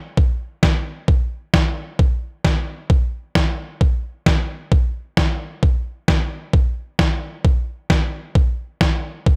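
A detuned 8-bit digital drum machine carries this short pop excerpt on its own, with a thumpy kick and a medium-tuned snare sitting up front from 0.2 seconds through 9.4 seconds. Its electronic, sampler-style sound has a tape-warm softness, as if the beat had been re-recorded in a small room. The groove moves in a straight 4/4 feel, steady and uncluttered. A light reverb gives the sound a little air around its edges. The mood leans nostalgic and wistful, like a faded memory of an old game console.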